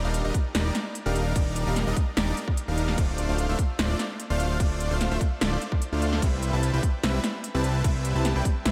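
Huge, lush detuned supersaw chords and a fat, thick sawtooth bass with tube saturation and a filter sweep open this euphoric, bright future bass excerpt at 148 BPM in a half-time 4/4 feel, both pumping to the sidechain as the harmony moves from Ebmaj7 to Dm7 at 3.0 seconds and Cmaj7 at 6.2 seconds. A big-room dance kit with a punchy snare, crisp hats and a tape-warm, layered character comes in almost immediately. A hard-clipped, overdriven electronic kick sits up front from 0.3 seconds, while diffuse ambient delay on the chords and a light digital reverb add space to the mix.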